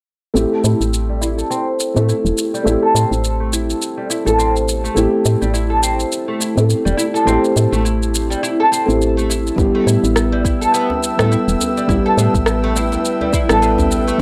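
Dry and gritty with a small-room ambience, this excerpt of organic downtempo in A minor moves at 104 BPM with a lightly swung sixteenth-note feel and a meditative, mystical mood. A muted, felt-dampened upright piano plays boxy accompaniment with audible action noise, alongside a round, woody FM bass that sits up front with tube saturation. Both breathe with sidechain pumping, while an electronic shaker and rim click keep time. A plectrum-plucked fretless oud, its double strings ringing close, spins arpeggios through a low-pass filter and tape echo, and filter sweeps run across both it and the bass over the Am7 harmony. At 9.6 seconds the chord moves to Em as a deep electronic kick and a very faint, hard-handed djembe enter, followed at 9.8 seconds by a soft, breathy pad of detuned sawtooth and noise that adds chorus-tinged sustained chords high above.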